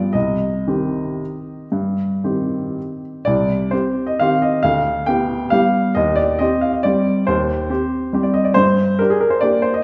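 A lone upright piano opens this short fragment of a classical waltz in C minor, its woody, smooth tone carrying a vintage character and a short sustain. The mood is nostalgic and bittersweet, and the 3/4 pulse moves with a rubato feel, drifting between 113 and 152 BPM. Ranging from C2 up to G5, the piano states an opening phrase and then begins it again at 3.3 seconds, with the harmony moving from Cm through G7/D and Cm/Eb before settling on Gm at 8.6 seconds. The instrument is tuned slightly low, to A4 = 438 Hz, which adds to its aged, intimate color. A wet recital-hall reverb surrounds the playing, and the listener seems to sit further back in the room.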